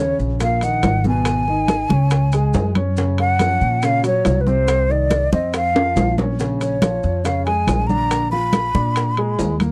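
A breathy, mellow jazz flute and a woody, thumpy pizzicato upright bass on gut strings open this fiery, sophisticated stretch of Afro-Cuban jazz up front, joined from the start by an intimate grand piano with long sustain and audible action noise. Congas and maracas join at 0.2 seconds, and bongos and ringing metal-shell timbales follow at 0.4 seconds. The groove runs at 140 BPM in a straight 4/4, with the harmony moving from Ebm7 through Gbmaj7 and Bbm7 to arrive at Bb7b9. Damped, bright congas, tight high-tuned bongos and grainy maracas sit in the background, and a drum fill breaks in from 5.8 to 6.4 seconds. The close-miked flute sings with vibrato and a soft attack, and the dry 1970s-style studio sound gives this passage, cut from a longer piece, an immediate, intimate presence.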